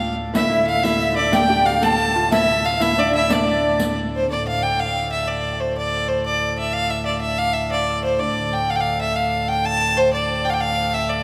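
A biting, nasal fiddle leads this driving, ancient-sounding medieval dance in 6/8, bowed up front by a single player over a full, brilliant organ plenum drone that sustains throughout in a wet church reverb. For the opening 3.9 seconds a breathy, unsteady tenor recorder with chiff and vibrato sits in the background alongside a delicate fingerpicked lute with doubled strings, while a riq with bright, saturated jingles joins at 0.3 seconds. All three drop away by 3.9 seconds, leaving the fiddle and organ to carry the second section in this fragment cut from a longer piece.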